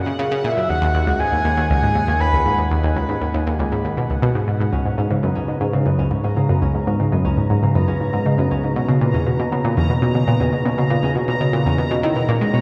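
Soaked in a lush hall reverb, this dreamy excerpt of cosmic, hypnotic, sequencer-driven space music rests on a round, nasal analog pluck riff sitting up front with chorus, phaser and delay, while a resonant, bubbling stepped-filter texture fades in high above, a breathy, flute-like synth lead with vibrato floats briefly from 0.4 to 2.6 seconds, and a ringing, thumb-plucked concert harp enters with delayed arpeggios at 4.7 seconds.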